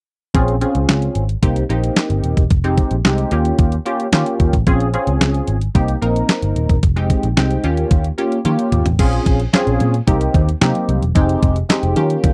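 Dry, close and up front, this late-night early-eighties boogie funk clip pairs a crisp 8-bit drum machine with a thumpy kick, handclaps and a drum fill at 8.5 seconds, a dark, round, foam-muted picked bass, and a punchy, detuned sawtooth polysynth comp with a filter pluck and chorus moving through minor seventh and ninth chords, while very quiet, ringing congas join at 9.0 seconds.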